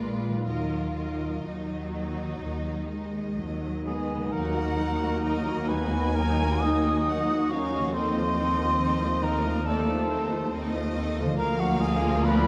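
A close, rich violin section sings a melancholic, yearning melody over lush second violins, portamento-tinged violas, ringing harp arpeggios, and a dark cello and smooth double bass foundation in this slow, rubato romantic orchestral passage cut from a longer piece. At 3.9 seconds a hollow flute and a mellow solo cor anglais add second lines while a clear horn section holds sustained chords in the background. The whole is bathed in the wet reverb of a concert hall, with a shadowy, velvety production.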